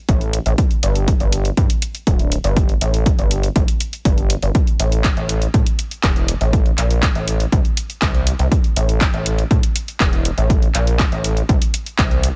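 A gritty, aggressive synth bass sits up front in this dark, hypnotic melodic techno cut, its nasal sawtooth tone mixed with sine and oscillator sync, shaped by a filter sweep, a fast attack and a decaying envelope. Saturated and pumping against the sidechain, it moves between D1 and A2 in A phrygian at 121 BPM in a straight 4/4. A punchy, overdriven electronic kick drives the groove from 0.1 seconds, layered and placed forward in the mix, with the ambience of a large room around it. A techno drum kit adds handclaps and warm hi-hats, also layered and carrying that same large-room character, though it sits lower than the kick and bass. The overall sound is dry, with very little reverb, and this short passage is cut from a longer piece.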